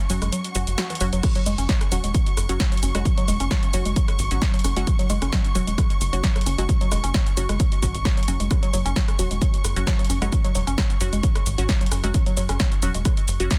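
A straight 4/4 groove at 132 BPM drives this excerpt of peak-time techno, tuned to A4 = 438 Hz and cut from a longer piece, with an industrial, hypnotic mood. A punchy analog drum machine lays down crash cymbal, hi-hat, rim click, shaker and a punchy snare, re-recorded in a small room. After a very quiet electronic swell between 0.5 and 1.2 s, a heavy, layered electronic kick lands up front at 1.2 s with a tape-warm weight. Beneath it, a tight sawtooth-and-square sequencer bass pumps with a moving notch, while a woody, wave-folded pluck riff with a sub octave, chorus and digital delay sits alongside muted, detuned dub chord stabs treated with phaser and tape echo. High above, a dark, close studio string section adds a bowed texture with vibrato and portamento, and the stabs, pluck, bass and strings all breathe with sidechain pumping in a dense, heavily limited mix that carries little reverb.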